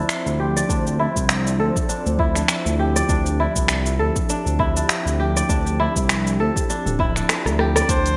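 Earthy and meditative, this organic downtempo piece in D minor moves at 100 BPM with a light sixteenth-note swing over a single Dm7 chord. A fingerpicked kora rings up front with crisp arpeggios under a filter sweep and delay, while a detuned sawtooth pad sits in the background with chorus and sidechain pumping. Beneath them, a smooth gliding synth bass with vibrato and portamento also pumps, and an up-front electronic kit of cabasa, finger snaps, hi-hat and rim click plays in small-room ambience with gated reverb, joined by a deep electronic kick from 0.7 s. After a drum fill from 7.3 s, a clear, focused bowed kamancheh enters close on a single C5 at 7.9 s, and the whole mix sits in a lush hall reverb with a bright 1980s-style digital sheen.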